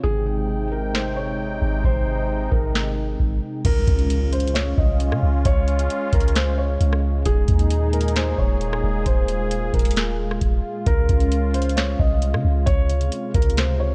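Atmospheric cloud-rap hip hop with a dreamy, blissful mood, moving in an unhurried half-time feel through a short section cut from a longer piece. A felt-muted upright piano carries the melody from the start, its thick felt, dark and intimate tone softened by a low-pass filter and trailed by tape echo, with the action noise audible in the keys. Beneath it, a sweeping resonant pad holds sustained chords with detuned sawtooth warmth and a vintage warble, slow to bloom and long to fade, treated with chorus and sidechain pumping. A soft, round 808-style bass sits up front with a deep sine body that decays after each fast attack, while a booming analog drum machine enters at 0.9 seconds with a dry, deep kick, crisp snare, metallic hats, rim clicks and crash cymbal. A very quiet electronic impact marks the shift into the second section at 3.6 seconds, as the harmony moves from Abmaj7 through Db and Ebsus4 to Dbmaj7, all set in a digital ambience.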